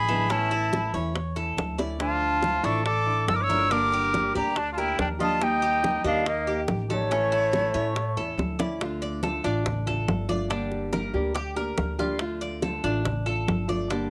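Cuban son and guajira at 141 BPM, danceable and warm, cut from a longer piece and recorded at home on cassette with light reverb. An airy, vibrato-laden concert flute carries the tongued melody over a punchy trumpet second line with scooped notes, and both stop at 8.4 s, just before a drum fill leads into the D minor passage at 8.8 s. Fingerpicked nylon-string guitar, metallic double-strung tres arpeggios and a growly, woody pizzicato upright bass continue to the end with close, dry, low-tuned bongos and thick-skinned congas set in the background.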